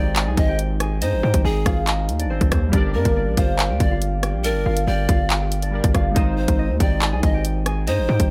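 A fingerpicked concert harp opens this dark, tense drill excerpt, its ringing acoustic melody softened by a low-pass filter and echoed by digital delay. A breathy, bright bamboo pan flute carries a second line alongside it, with vibrato, a tongued chiff and an expressive, delayed voice. Warbly lo-fi synth keys sit in the background with nostalgic, detuned chorus and a filter sweep, while a distorted, saturated 808-style bass hits up front with a heavy, aggressive weight. At 0.2 seconds the electronic drill kit arrives at 140 BPM in a half-time feel, pairing a hard-clipped kick with bright hi-hats, handclaps and rim clicks. The harmony moves from Ab to Gm at 2.7 seconds and returns to Ab at 6.2 seconds, all inside a digital ambience.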